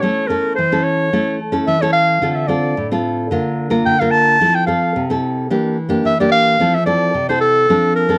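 A punchy, present clarinet plays an up-front classical-style solo melody over a full-bodied, fingerpicked nylon-string guitar in this lively, nostalgic samba fragment, tuned to A4 = 436 Hz and moving through chords from A and Dm7 to Fmaj7 and Em7b5, captured with close, detailed microphones and light reverb.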